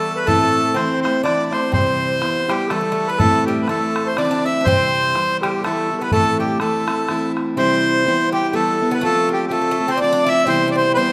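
Celtic folk waltz in 3/4 at 123 BPM with a swung lilt, dark yet lively and spirited, cut from a longer piece and moving through Am and Cmaj7 before touching F. A reedy, full accordion carries the melody up front and dry, while a very quiet baroque flute with a pure wooden tone, vibrato and a soft attack plays a second line alongside a mellow, metallic Irish bouzouki sitting in the background with its double strings. A jumbo plugged-in steel-string guitar, picked up front with audible finger squeak, anchors the accompaniment, and a boomy, open bodhran drives the rhythm from 0.3 to 7.5 seconds, all set in a wet recital hall reverb.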